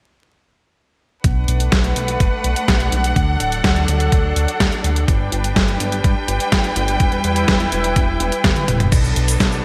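Bittersweet and danceable, this short italo disco excerpt moves at 125 BPM in a straight 4/4 in B minor, tuned slightly sharp to A4 = 444 Hz. From 1.2 seconds a clear, bowed string ensemble holds lush sustained chords with vibrato, cycling through Bm7, D, G and Em before returning to Bm7 at 8.9 seconds. Beneath it, a chorused synth bass blends pulse and sawtooth tones into a glossy, mellow line with a fast attack and an evolving, moving notch. The drums pair a thumpy, tape-tinged electronic kick with a detuned 8-bit drum machine sitting up front, its medium-tuned snare, hi-hat, cabasa, crash and toms bathed in gated reverb, with a drum fill arriving at 8.4 seconds. A lush hall reverb and vinyl crackle frame the bright, 1980s-style digital production.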